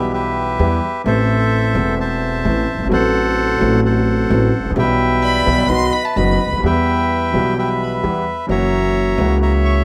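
Passionate and tense, this fragment of a tango in E minor moves at 129 BPM with a rubato feel, its reedy, airy bandoneon carrying the melody up front with a plate reverb sheen. A warm concert grand piano with audible action noise and deep bass supplies the accompaniment, while a woody, thumpy upright bass plucked on gut strings anchors the low end through a progression that runs from Em through Am, F#dim/A and B to a closing F#7. Between 5.2 and 6.5 seconds, an expressive bowed violin with vibrato and portamento and a pure, hollow silver flute set in the background add brief second lines, all within a moderate small room.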